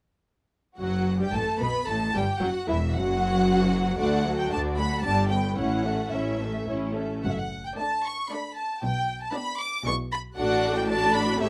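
Lively and graceful, this quick classical-period movement for string orchestra moves in triple metre with a flexible, rubato feel, and it is cut from a longer piece. All five sections enter together at 0.8 seconds and play through to 11.5 seconds, with the first violins carrying the melody high in their range, sounding smooth, even and up front with a close, vibrato-laden tone. Beneath them, the second violins add a lush second line with a soft attack and expressive shading, while the violas fill in the accompaniment with a focused, rich sound. The cellos share the bass with a warm, expressive tone touched by portamento, and the double basses underpin them with a bright, intense edge and light vibrato. The harmony drifts through colourful suspended and added-note chords before settling into clear cadential progressions, all set in a moderate studio ambience with a short, natural reverberation.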